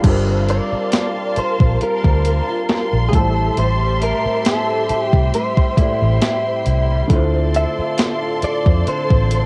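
Contemporary R&B fragment with a longing, late-night mood and a light swing, built on a punchy, foam-muted electric bass and a thumpy, overdriven 12-bit drum machine sitting up front, beneath a mellow felt-muted upright piano, a boxy fingerpicked archtop guitar with finger squeak and tape echo, and a distant, woody string section pumping under sidechain, while a bright, compressed clean electric guitar with ensemble chorus carries the melody from 0.5 seconds, captured as a home recording on cassette with light reverb.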